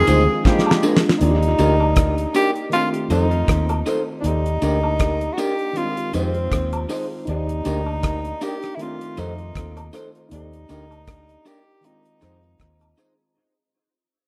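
A damped 70s drum kit with a fat snare and tight kick drives a gently swung 79 BPM lovers rock reggae groove in Eb major alongside a round, foam-muted electric bass, a barky, slightly out-of-tune tine electric piano and slightly broken-up guitar stabs, both with dub echo, plus tambourine and woodblock in the background and a distant horn section that stops at 0.8 s, while an up-front tenor saxophone with light vibrato and tape echo carries a sweet, tender melody through a lush hall and a rough demo mix that fades out from 1.2 s.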